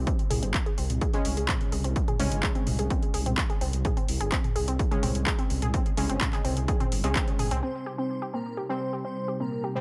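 Melodic techno at 127 BPM in 4/4, cinematic and driving, this clip from a longer piece opens with a punchy, warbling unison pluck arpeggio under a filter sweep, brassy synth stabs with chorus and tape echo, a deep, rumbling detuned saw bass, and an overdriven techno kit of handclaps, hi-hat and toms behind an up-front heavy kick, with the pluck, stabs and bass pumping, all in light reverb. The kick drops out at 7.3 s, and at 7.6 s the rest of the kit and the bass fall away as the harmony settles on C minor. A thick, bold unison lead with digital delay enters beside an airy, dreamy second line gliding with portamento above it. A lush, phased unison pad fades in slowly underneath, with filter sweeps on the lead and pad carrying the clip to its end at 9.8 s.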